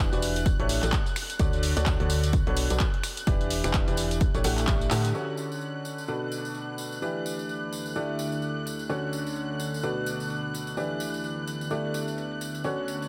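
Piano house at 128 BPM with a swung sixteenth feel, euphoric and joyful, built on a clear, woody upright piano riff with audible action noise, delay and filtering, over veiled con sordino violin chords, a hollow organ-like FM bass until 5.1 s, a tape-warm electronic kick until 4.8 s, a punchy analog drum machine of claps, snaps, filtered hats and crash, and a live-room tambourine, with a drum fill and band accent at 4.9 s before a deep, moody sawtooth pad with chorus and built-in reverb enters at 6.3 s over Dmaj7, Bm7 and Em7 changes, the strings, piano, bass and pad all pumping to the sidechain in light digital ambience.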